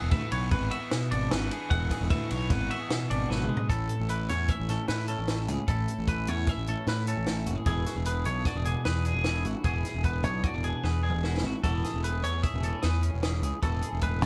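The fuzz-soaked fingered electric bass sits up front in this short cut from a longer math rock and midwest emo piece, its round, overdriven low end anchoring a bright, wistful mood at 151 BPM in an odd-metre 5/4 with a straight feel in A major. Over it, a clean twelve-string electric guitar carries the accompaniment through a phaser, while a twangy, compressed electric guitar picks high arpeggios. A compact cocktail drum kit enters at 0.1 seconds with a dry, natural sound: a high-tuned snare, a tight kick, toms, hi-hat and dark-toned ride cymbal, placed close in the mix. Drum fills mark the move into the second section at 3.7 seconds and arrive again just before the harmony settles from E7 onto Amaj7/E at 11.6 seconds. The band sounds as if it is playing live in one room, lightly touched with reverb.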